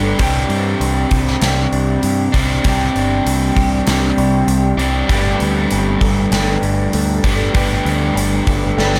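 Hazy, dreamy shoegaze and dream pop at 98 BPM, cut from a longer piece, where a very quiet, shimmering fingerpicked twelve-string acoustic guitar with audible finger squeak weaves arpeggios beneath two electric riffs, one slightly broken-up through a small old amp with reverse reverb and the other overdriven, compressed and up front with subtle chorus, while a bright, growling overdriven picked bass and a polished, gated 80s drum kit with a tight kick entering at 0.2 seconds carry the song from Csus2 to Gadd9 at 5.1 seconds before a drum fill at 8.8 seconds.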